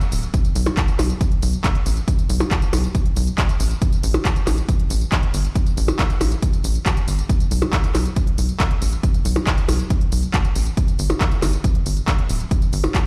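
This bittersweet, emotional stretch of uplifting trance moves at 138 BPM in a straight 4/4, tuned to A4 = 444 Hz, and is cut from a longer piece. An overdriven techno drum kit opens at 0.0 s with smooth hats, handclaps, tambourine and percussion blips, layered and produced with a gritty edge. A tight sequencer bass follows almost at once, a punchy, driving blend of sawtooth and square wave with a filter pluck, fast attack and mellow decay, moving between D1 and B1 and pumping under sidechain compression. From 0.3 s a heavy, layered electronic kick drum sits up front, overdriven like the kit and matched in level by the bass. The sound carries the weight of a big system in a bare room, with a large studio reverb around the mix.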